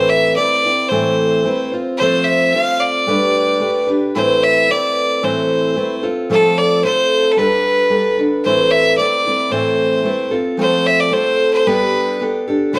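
A straight, steady 4/4 rock pulse runs through this reflective, wistful fragment of a longer piece, carried by a picked steel-string acoustic guitar with fresh, sparkling strings that sits up front and circles through Amadd9, F and Gadd9. Over it a single bowed fiddle plays the melody throughout the 12.8 seconds, biting and intense with light vibrato. Both share a moderate large-studio reverb that lends the close, clear sound a sense of space.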